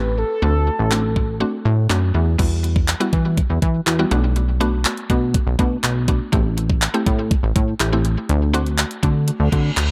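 An echo-heavy digital ambience wraps this confident, energetic dance-pop excerpt, where a mellow, horn-like detuned synth lead sings a brief melody until 1.9 seconds over a woody, round mallet-like FM pluck with chorus and tape echo, a punchy, funky analog bass with sidechain pumping, and an up-front, overdriven pop drum kit that enters at 0.9 seconds with a knocking kick, handclaps, hi-hat and crash, before a reverse cymbal comes in at 9.4 seconds.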